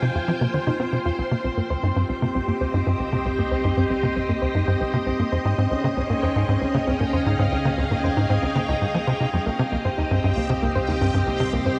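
A lush, vintage string machine ensemble holding sustained chords, a soft, round pluck tracing echoing, shimmering arpeggios and a tight, punchy, nasal sequencer bass riff open this hypnotic, mysterious fragment of sequencer-driven space music, while an evolving, warbling analog drone sits in the background and a bubbling, resonant stepped-filter texture fades in over Fm7, Cm7 and Db chords, all set in a moderate plate reverb.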